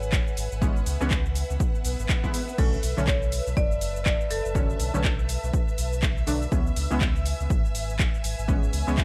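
A swung, hypnotic deep house groove is driven by a punchy, up-front electronic kick from 0.1 seconds and a tape-warm analog drum machine of cabasa, crash, handclaps and hi-hat, over a deep, mellow sine sub bass that pumps against the kick. From 0.6 seconds, muted, detuned dub chord stabs with lush chorus and tape echo move through minor-seventh and ninth harmony, set against dark, woody bowed symphonic strings and a shimmering vintage string machine of violins in the background. A mid-forward marimba with medium hard mallets carries a short echoing melody until 5.2 seconds, and a brief electronic swell sounds within the moody digital ambience of this cut from a longer piece.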